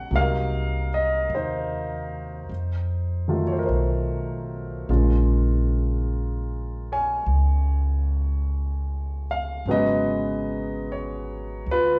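Intimate and melancholic, this slow jazz ballad moves with a gentle swing in 4/4, a brief passage cut from a longer piece. A grand piano carries the accompaniment throughout the 12 seconds, its tone natural and close, with long sustain and the sound of its action audible beneath the chords. An upright bass plays pizzicato underneath, woody and thumpy on steel strings, sitting up front in the low register. The harmony drifts through half-diminished and altered dominant colours into minor sevenths, settling on Abm7 at 9.7 seconds. A moderate studio reverb places the pair a little further back in a large room, lending the duo a hushed, late-night air.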